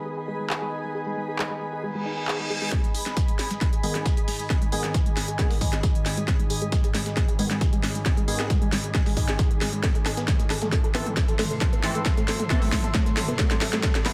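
Edgy, nasal sync-sweep polysynth stabs with dub echo and a blurred, sidechain-pumped granular cloud pad open this relentless, industrial excerpt of driving peak-time techno at 135 BPM in G# phrygian, quickly joined by a tight, wave-folded sequenced synth riff with phaser and the cracking snare and smooth hats of a tape-warm techno drum kit, before a very quiet reverse cymbal and riser slips in at 2.0 seconds, a heavy, up-front electronic kick and a gritty, compressed sampler-style soul kit with fat snare and tambourine arrive at 2.7 seconds, and an eerie metallic inharmonic drone settles into the background from 3.5 seconds, all under light reverb as the harmony shifts from G#m to Am.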